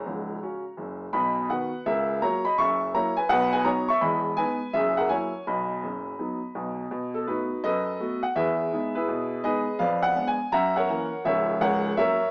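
The recording has a small-speaker character, with a moderate studio reverb around a band playing live in one room. This exuberant, swinging stride piano excerpt moves at 166 BPM in 4/4 with a swung eighth-note feel in B major, tuned slightly high to A4 = 441 Hz. A clear, woody, vintage upright piano plays solo and up front for the full 12.3 seconds, spanning C#1 to C#6 with a long sustain. The first section moves through F#, B, F#7 and Emaj7 before settling on B, and a second section begins at 6.9 seconds with a turn to B7. From there it passes through Emaj7 and an Fdim7 before closing on F#7 over C#, as this excerpt is cut from a longer piece.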